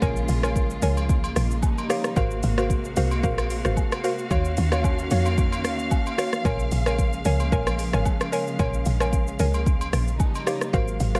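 A punchy, woody log drum bass sits up front in this deep, hypnotic amapiano excerpt, alongside an electronic drum kit with a deep kick and metallic hats, a round, mellow mallet-like synth pluck playing stabs through chorus and delay, a lush string section holding sustained chords with vibrato and portamento, and faint acoustic agogo bells and woodblock, set in a digital ambience.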